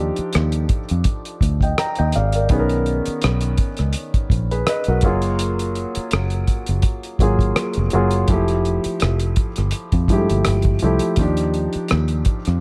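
R&B and neo-soul shape this soulful, relaxed 12.6-second cut from a longer piece, moving at 83 BPM in 4/4 with a light 16th-note swing and tuned slightly flat of standard pitch. A concert grand piano carries the accompaniment from the start, intimate and natural in tone, with deep bass and audible action noise that brings the listener close to the instrument. A fingered electric bass sits up front beside it, bright, direct and punchy, its foam-muted notes holding to a low register. The cloth-damped drum kit joins at 0.2 s with hi-hat, rim click and a tight, thuddy kick, sounding dry, smooth and dark with a rolled-off top. The harmony drifts through lush major-ninth chords, from Ebmaj9 through Bmaj9, Gbmaj9 and Fmaj9 before settling back on Ebmaj9, all wrapped in a small room ambience and a dusky, warm production.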